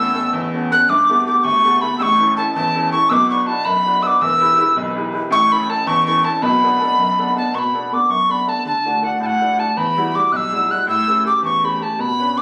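A tin whistle and a bright upright piano start together at 0.0 s in this wild, driving Celtic jig, cut from a longer piece and moving at 108 beats per minute in 6/8 with a straight feel. The metal whistle carries the melody across the octave from F#5 to F#6, its pure, warm tone marked by vibrato, a crisp chiff on each attack and lifted highs, and it sits up front. Beneath it, the piano's accompaniment spans deep bass to the middle register, with a brilliant, woody, slightly detuned and worn character that sounds open and sits close as well. The harmony moves through chords such as Aadd9, Bm and Em, and a second section arrives at 7.5 s, passing through D and Emadd9 before settling on A7. Captured on a phone in the room, the sound carries moderate studio reverb and compression, giving the duo a lively, immediate presence until both parts stop at 12.4 s.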